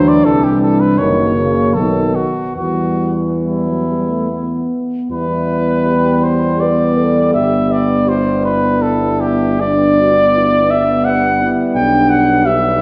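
The recording sits in a resonant church or concert hall, its lingering reverb giving this short cut from a longer piece a lyrical, glowing character. It is a classical, hymn-like piece for brass band in triple time, moving with a flexible, rubato feel. Up front, a warm cornet carries the melody with light vibrato. Behind it, a dark, distant French horn section sings a second line, while a clear, roomy trombone and a mellow euphonium with gentle vibrato fill in the accompaniment. A tuba with a smooth top and light vibrato anchors the bass throughout, and the harmony moves from C through F# and B7 to E minor before a second section begins at 5.1 seconds and settles toward G/B near 11.8 seconds.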